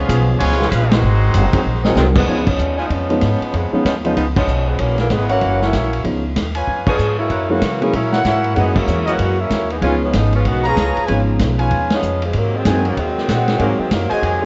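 Big band swing jazz in Db mixolydian at 191 BPM, swinging and joyful, opens with a brilliant trumpet section carrying the melody over a background trombone second line and clear sustained trombone chords, then a bright, loose saxophone section takes the tune from 1.8 seconds as a warm concert grand piano with audible action noise comps and a second trumpet section punches stabs, all driven by a woody pizzicato upright bass and a vintage drum kit with a punchy kick, dark cymbals and a fill at 1.6 seconds, heard through light reverb and worn, warbling cassette tape with a dulled top end.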